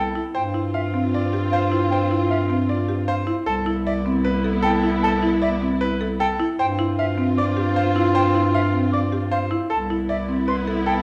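This is a short cut of classical minimalist pattern music with a hypnotic, bright mood and a straight 4/4 pulse. A brilliant baby grand piano carries the melody in an intimate, polished voice, its short sustain and audible action noise keeping it close and present. A buzzing marimba struck with hard mallets spins woody, dry arpeggios while a pure, hollow concert flute traces higher arpeggios with a crisp attack and rolled-off highs. Beneath them a clarinet sits in the background as a second line, a rich studio string section holds bowed chords with vibrato and a soft attack, and a mellow bass clarinet stays up front with a smooth top on the bass line. The harmony alternates between G7sus4 and Cmaj7, changing at about 3.5, 6.6 and 9.7 seconds. All six parts enter together at the start and play through the cut in a moderate recital hall reverb with a dark, warm production.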